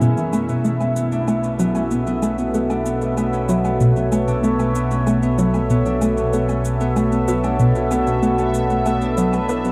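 Ambient, sequencer-driven space music in B minor at 95 BPM, this short excerpt from a longer piece feels mysterious and cosmic, resting on a single Bm7 chord throughout its 9.7 seconds. A sweeping resonant pad sits up front with bright, evolving sustained chords, treated with chorus, phaser and shimmer reverb, while a Celtic harp rings out fingerpicked arpeggios softened by a low-pass filter and delay. A plucky analog bass drives a punchy, funky riff with a fast, decaying filter pluck and its own delay, supported by a deep, round sine sub bass that fades in over the whole passage. Cabasa and woodblock add light, tape-warm percussion with delay, and a bubbling stepped-filter texture hovers high on E5, its random resonant steps washed in chorus and shimmer reverb. The production is dark and drenched in a huge ambient reverb with a long 7.8-second tail, giving the whole piece a vast, drifting sense of space.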